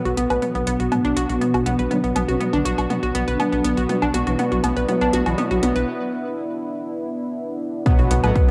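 A bright, round analog pluck sits up front, spinning B minor arpeggios through chorus, tape echo and sidechain pumping in this melancholic, driving melodic techno build-up at 121 BPM, cut from a longer piece. Behind it, a deep, moody pad with a slow attack, bold and nasal detuned synth-brass stabs, and a mellow brass melody with cassette tape colour all pump beneath a wet spring reverb. A tight, saturated sequencer bass holds B1. A dry, overdriven analog drum machine plays a fill of hi-hat, toms and woodblock until 5.9 seconds, while a filter sweep runs across the build. After a break, an overdriven electronic kick lands up front with a very quiet impact at 7.9 seconds, all captured as a home recording on cassette.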